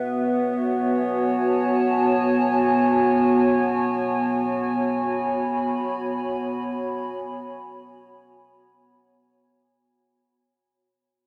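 A lone warbly, tape-like pad opens this brief ambient excerpt in free time, holding a single F#m/B chord in tuning of A4 = 439 Hz. Its detuned square and triangle tones, reinforced by a sub octave, rise through a slow attack and sustain with a long release, sitting up front in the mix yet dark and nostalgic in colour. Chorus gives the pad its lo-fi, vintage wobble, while its built-in reverb and a diffuse ambient delay blur the edges. The whole passage floats in a huge, wet ambient reverb with a long 8.2-second decay, lending a luminous, warm glow. From 2.8 seconds the sound fades out until the clip ends at 9.9 seconds.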